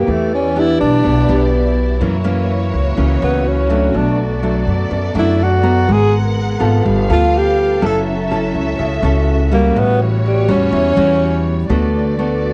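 A home cassette recording with studio reverb carries this sunny, sophisticated bossa nova excerpt at 124 BPM, where a mellow tenor saxophone solos up front with subtone, vibrato and scooped notes until 11.5 seconds over fingerpicked nylon-string guitar with a cassette-tape tint, woody pizzicato upright bass, and a soft-attack, sul tasto string section holding sustained chords that move from Em7 through G#m9 and A13 to a closing D6.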